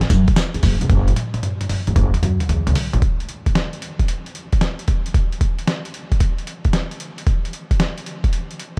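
New jack swing R&B with a slick, bouncy mood, this short excerpt moves at 113 BPM in F# minor, its sixteenth notes pushed into a 67% swing. A dusty, sampler-style drum kit carries the groove throughout, with hi-hat, kick, snare, tambourine and toms sounding gritty and compressed, the kick thumpy and the snare medium-tuned, all given an overdriven edge and placed up front with the character of a small room. A pizzicato upright bass with gut strings joins almost at once, playing woody, dark low notes between E1 and F#2 until it drops out at 3.0 seconds. A drum fill runs from 0.9 to 3.0 seconds, leading into a second section where the drums continue alone. Light reverb sits around the mix.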